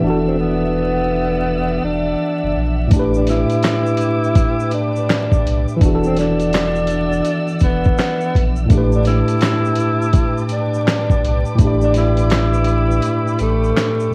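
This nostalgic, melancholic lo-fi hip hop excerpt opens on a worn, slightly out-of-tune tine electric piano with light overdrive, lush bowed strings played sul tasto, and a deep, round sub bass, moving between E9sus4 and A9sus4 at 83 BPM with a swung 16th-note feel. A breathy tenor saxophone enters at 0.3 seconds with a whispered, subtoned jazz solo full of vibrato and scooped notes, and at 2.9 seconds a gritty, compressed sampler-style kit arrives with a thumpy kick, fat snare, hi-hat and handclaps, along with a grainy tube shaker in the background. The whole mix sits in moderate reverb and carries the warble of old cassette tape, with pitch drift and vinyl crackle, before a brief break from 13.0 seconds.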